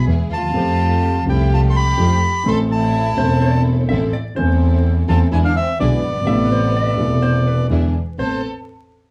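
A dark, bowed double bass with a gut-string tone sits up front in this tense, dramatic tango excerpt in A minor at 126 BPM with a rubato feel, joined by a reedy bandoneon melody, a mellow concert grand piano, a pure sul tasto violin section, lush background string stabs, and from 3.2 seconds a clean, compressed hollow-body electric guitar, all heard from further back in a wet club room with vinyl crackle.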